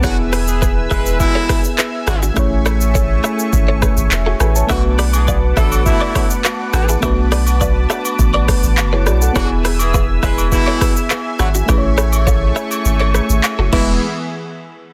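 A breezy, romantic afrobeats groove at 103 BPM in E mixolydian opens with the whole band at once: an overdriven afro-pop drum kit with a deep kick and metallic hats, a punchy sine sub bass with a pitch-drop attack, a bright, scooped clean guitar riff bathed in lush chorus and tape echo, and tight, clear horns carrying a second line with light vibrato. Beneath them, a soft, round FM electric piano and a smooth, detuned analog pad with a moving notch fill out chords that move from E through Amaj7 and Bm7. Agogo bells and woodblock join quietly in the background at 4.7 seconds, and the kick drops out at 12.9 seconds in this dense, heavily limited mix cut from a longer piece.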